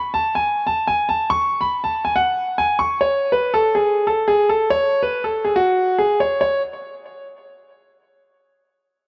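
A lush hall reverb with a long 2.7-second tail surrounds this dark, menacing hip hop fragment, cut from a longer piece and set at 141 BPM in 4/4 with a half-time feel. A solo grand piano, clear and natural and placed up front, plays alone from the start until 6.6 s, moving between F#4 and C#6 through a low-pass filter. The music shifts into new sections at 3.0 s and 6.4 s.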